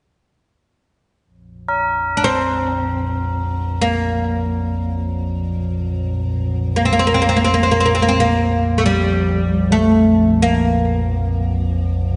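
A bright, woody oud carries the melody up front from 2.2 seconds, its plectrum-plucked double strings sounding deep and fretless in the low-middle range. This is calm, spacious world meditation music in free time, a short excerpt cut from a longer piece. Beneath it, an eerie, inharmonic drone sits low from 1.7 seconds, slow to rise and long to fade, colored with chorus and its own reverb. Soft, solemn tubular bells, struck with a padded hammer, ring on a single high note as a dry, close, full texture until 10.7 seconds. A lush hall reverb of moderate depth surrounds the whole, and the sound stays gentle at the top, with nothing above 10.3 kHz.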